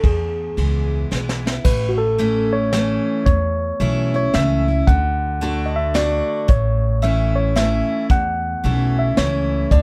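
From the first beat, a mellow tine electric piano carries the melody over a bright, picked steel-string acoustic guitar with audible finger squeak, a woody, thumpy pizzicato upright bass and an up-front vintage brush drum kit, in an easygoing, heartfelt honky-tonk and classic country tune in swung 3/4 at 112 BPM in A major, where a drum fill at 1.1 seconds leads into the second section at 1.6 seconds, set in a dry, dark production cut from a longer piece.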